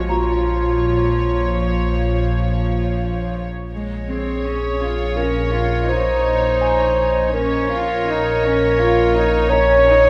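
Cinematic suspense film score in Bb minor at 83 BPM in 5/4, mysterious and uneasy, where a dark solo clarinet carries the second line beneath a softly bowed sul tasto violin section holding a pure, floating Db5 melody, distant cellos and warm double basses anchor the low end with a deep rumbling drone on Bb1, a mellow, boxy grand piano lingers in the background from 0.1 seconds, the harmony shifts from Db over Bb to Bbm7 at 3.7 seconds, and the whole passage, cut from a longer piece, sits in a wet cathedral reverb.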